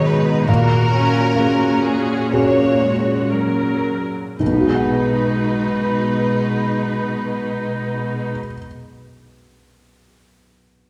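Loose and rubato over a 4/4 metre, the music slows through its opening 4.4 seconds before settling into a second section in this uplifting, tender fragment of a cinematic, emotional film score for orchestra. A lush violin section carries the melody with vibrato, while a bright, up-front viola section plays accompaniment just beneath it. A felt-muted upright piano adds soft, intimate accompaniment with audible action noise and short sustain, and it keeps sounding after the strings stop at 8.3 seconds, continuing until 10.9 seconds. A mellow concert harp plays fingerpicked, ringing arpeggios in the background, and a rich cello section anchors the bass with bowed vibrato. The harmony moves from F#add9/A# to B6, and the whole ensemble sits in a wet scoring-stage reverb, heard from further back in the room.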